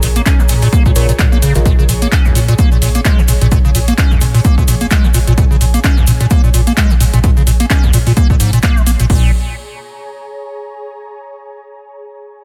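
A dense, heavily limited mix with little reverb gives this raw, gritty acid house fragment a close, in-your-face sound, cut from a longer piece and set in a swung 4/4 groove. A dry, punchy electronic kick sits up front from 0.3 seconds, joined by a booming analog drum machine with metallic hi-hats, handclaps and crash cymbal, while a grainy cabasa adds bright acoustic texture in the background. The centrepiece is a squelchy, resonant acid riff built on a square wave, bright and overdriven with a filter sweep, tape echo and a touch of chorus, pumping against the kick alongside a round, deep analog bass saturated through tubes underneath. Behind them an ethereal, airy pad of detuned unison voices with a noise layer drifts in slowly through ensemble chorus and its own reverb, also pumping, and it carries on alone after the rhythm parts stop until 10.9 seconds. A brief soft, nasal chord stab with a sub octave, coloured by cassette tape and echo, appears at 1.0 seconds over a Bbm7 harmony.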